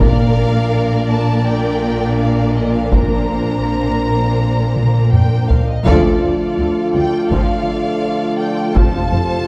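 At a stately 83 BPM in straight 4/4, a taiko ensemble struck with heavy sticks drives this majestic, triumphant cinematic orchestral cue in Bb major, cut from a longer piece, with a drum fill from 4.8 to 5.9 seconds leading into a full band accent at 5.9 seconds. Two lush, bowed violin lines carry the melody and a second line above a softly attacked viola accompaniment, while a dark, distant French horn section holds sustained chords in the background. Double basses with a rich, even tone and a focused cello section anchor the low end. At 5.9 seconds the harmony moves from Bb and Bbadd9 to D minor, and a clear trombone section adds sustained chords. Near the close, at 8.8 seconds, the chord shifts to F and close, dry timpani struck with hard mallets sound an articulate F, all set in a moderate scoring-stage reverb with a dark production.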